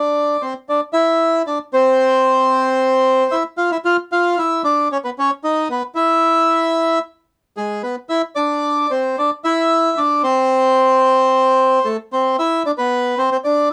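A lone bandoneon carries this short tango excerpt from start to finish, its reedy, dark voice sitting up front and carrying an airy breath around the edges of each note. The mood is melancholic and passionate, with the playing moving in a free, rubato feel over a nominal pulse of 113 BPM in 4/4. Its range spans G#3 to F5, and the harmony drifts through open suspended chords such as Csus2 and Dsus2, touches of D minor, B and E, then settles toward A minor before closing on a Bmadd11 around 12.4 seconds. Brief unharmonized moments at 1.7 and 10.2 seconds let the single line stand exposed. The sound is a dry, close studio capture in a 1970s style with little reverb, so every detail of the instrument comes through plainly. Lasting about 13.7 seconds, it is cut from a longer piece.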